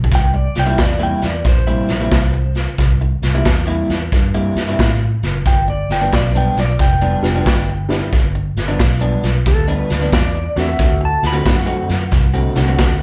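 A gritty, saturated garage drum kit sits up front in this rollicking electric blues shuffle, its punchy kick and medium-tuned snare pumping in a small room, while a dark, round, foam-muted electric bass holds the low end. Over them a clean lap steel guitar sings a slide melody with volume swells, slapback echo and plate reverb, and an electric guitar through a small old amp plays a slightly broken-up, picked riff with subtle chorus. A detuned, jangly honky-tonk upright piano joins at 7.2 seconds as the changes move from C7 through G7 to D7, all heard like a live club gig through the venue's PA in this excerpt from a longer piece.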